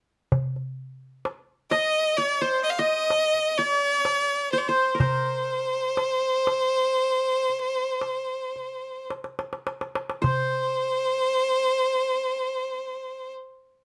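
A close, dry clay-shell darbuka opens this hypnotic, longing Arabic maqam fragment at 0.3 s in a straight 10/8, its tempo sitting between 104 and 130 BPM in eighths. At 1.7 s an intense, biting solo violin with vibrato and an airy bow carries the melody up front, while a bright-edged qanun, plucked with fingerpicks on its triple strings, plays a second line beneath it in a moderate studio reverb. The pulse slows from 2.2 s, and a darbuka fill leads into a new section at 10.2 s. The drum drops out at 10.8 s, and the violin and qanun continue to the end.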